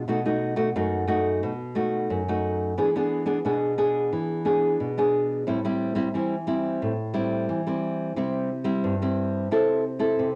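Recorded to cassette with a wet small-room reverb, this short, yearning samba fragment at 89 BPM, cut from a longer piece, features a lone nylon-string guitar, up front and fingerpicked with a warm classical touch, that moves from B7 through E7 and Am7 before settling onto C and Am/C in the closing 2 seconds.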